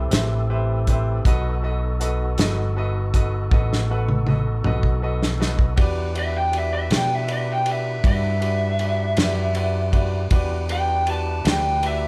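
A bright, woody upright piano, a fat tonewheel organ with overdrive and fast rotary speaker sitting in the background, and a dark, round fingered electric bass open this smoky, brooding slow blues in 12/8, joined at once by an up-front soul drum kit with a tight kick and dark cymbals. The drums play a fill from 3.5 seconds, and at 6.2 seconds a lo-fi, overdriven lead guitar through a small cranked amp takes a picked solo. The band plays live in one room with light reverb, and this is cut from a longer piece.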